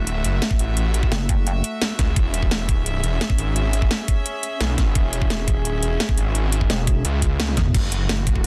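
A reedy, gut-string chamber ensemble holds sustained chords over a thick, detuned saw bass, both pumping under sidechain as this tense, mechanical dark technical drum and bass drop opens on F#m7 before moving to E6. A knocking electronic kick and an up-front kit with a cracking, clipped snare, metallic hats, crash and toms drive the groove in a dense, heavily limited mix. A heavy, pulsing pluck wobble bass surfaces briefly at 1.1 seconds and again at 6.7 seconds, leading into a band accent and drum fill around 7.4 seconds.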